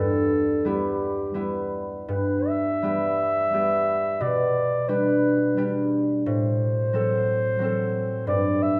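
Serene and tender, this brief excerpt from a longer romantic classical piece pairs clarinet and concert harp in triple metre, with uneven, rubato beats that let the phrases breathe. The dark clarinet carries the melody in a classical style, sounding distant and roomy yet still placed up front, moving between G4 and E5. Beneath it, the fingerpicked concert harp provides a warm, ringing acoustic accompaniment from G2 to A4, also up front in the balance. Both instruments play together from the opening to 8.8 seconds, tracing a harmonic path from Em/G through G, G/B and F#dim/A before settling back on Em/G. A wet recital hall reverb surrounds the duo, and the performance is tuned slightly high, to A4 = 443 Hz.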